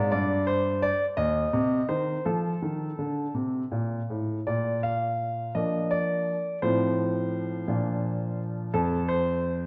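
Bathed in a wet recital hall reverb, this short fragment of a classical-period sonatina features a solo concert grand piano, up front, clear and natural with deep bass and long sustain, playing a graceful, playful 6/8 line with rubato that moves into a new section at 4.5 seconds before breaking off at 9.7 seconds.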